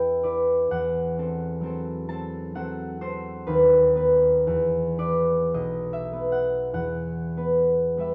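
The recording sounds dark and warm, the instrument placed up front in a moderate recital hall whose reverb lingers for about 1.6 seconds, with the top end gently rolled off. This is a brief classical fragment for solo concert harp, mysterious and wistful, in E minor and 3/4 time. The tempo floats between 47 and 67 BPM with a rubato feel, and the harp plays alone for the full 8.1 seconds, spanning B1 up to B5. Its thumb-plucked strings give a warm, ringing tone. The harmony moves from E minor through F#m7b5 over E to B over D#, settles on bare E fifths, steps outside any chord at 5.5 seconds, and returns to E fifths at 6.7 seconds.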